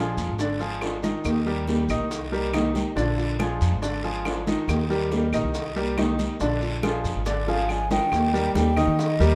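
A bright, up-front baby grand piano opens this sunny, relaxed Cuban son and guajira excerpt, playing arpeggios over a boxy, fingerpicked nylon-string guitar and a thumpy pizzicato upright bass in Eb major at 140 BPM in a straight 4/4. The piano has a brilliant, natural tone, while the bass sits up front with a woody, steel-string sound. Almost at once the percussion fills in: tight, high-tuned bongos and a raspy guiro heard from a distance in a large room, along with grainy vintage maracas, thin-skinned, damped congas struck with hard hands, and dry, close claves, most of them kept in the background. The harmony rocks steadily between Bb7 and Eb, and a drum fill at 7.3 seconds leads into a new section. A breathy, hollow concert flute enters at 7.5 seconds, close-miked with a straight tone and soft attack, carrying the melody high above the band under a light reverb.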